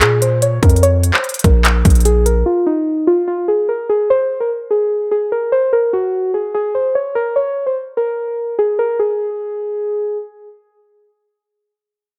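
A half-time trap groove at 147 BPM opens this melancholic, hard-hitting hip hop excerpt, with an electronic drum kit of hard-clipped kick, crisp hi-hats and handclaps sitting up front beside a punchy, heavy 808-style bass, both of which stop at 2.4 seconds. Muted, felt-like synth keys carry the melody from the start until 10.2 seconds, their soft, dark and intimate tone thickened by chorus. The sound is dry and close, with little reverb.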